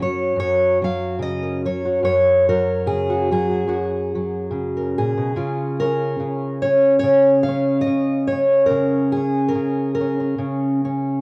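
A gently swung 4/4 pulse at 72 BPM carries this nostalgic, peaceful folk fragment in F# major, tuned to A4 = 436 Hz, where a solo fingerpicked steel-string acoustic guitar sits up front with fresh strings and audible finger squeak, moving from F#add9 to C# at 5.3 seconds and A#m/C# at 8.7 seconds, its cassette-tape coloring and the wet reverb of a small room giving the home recording an intimate, lived-in feel.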